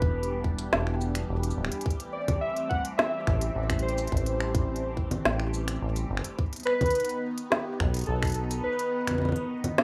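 A rough home-demo sound wrapped in wet small-room reverb frames this glitchy, wistful IDM fragment at 106 BPM in straight 4/4, moving from Em7 to Am7 and then B. Warbling, nostalgic lo-fi synth keys with chorus, tape echo and detuned, ring-modulated tone carry the melody over a swirling, slowly evolving phased analog pad. A rubbery, resonant acid bass with tube saturation sits up front beside a tight, tape-warm electronic kick, and from 0.2 s an organic electronic kit adds woody snare, crisp hats, congas, finger snaps, rim click and shaker.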